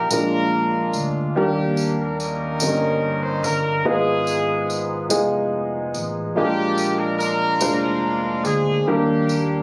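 Soulful and jubilant, this slow gospel passage, cut from a longer piece, moves at 48 BPM in a straight 6/8 in Eb major, tuned to A4 = 436 Hz. A clear, tight horn section with a smooth top carries the pop-style melody up front, ranging from Bb3 to C5. Alongside it, a warm, worn baby grand piano with long sustain supplies the accompaniment, sitting just as close to the listener. A dark, round, amped electric bass, played with the fingers, holds the low end between F1 and Eb2, while a jingly, bright tambourine joins at 0.1 seconds. The harmony travels from Bb7 through Ebmaj7, Eb7/G and a lingering Abm6 before returning to Bb7 and settling on Ebmaj7 at 8.9 seconds. The sound has the feel of a phone capture in a small room, with light club reverb and compression.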